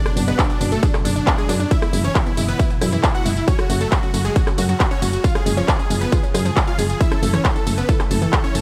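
Set in a digital ambience, this emotional, soaring uplifting trance excerpt in F# minor at 136 BPM carries huge, bright supersaw chords with tape echo as the melody over a silky analog string pad with ensemble chorus, a lush unison pluck arpeggio and an airy supersaw stab with dub echo, all four sidechain pumping along with a round, mellow FM bass that enters at 0.2 seconds, while an overdriven big-room dance drum kit with crisp hats and a punchy, up-front electronic kick drive the groove through chords over an F# pedal toward a drum fill at 8.3 seconds.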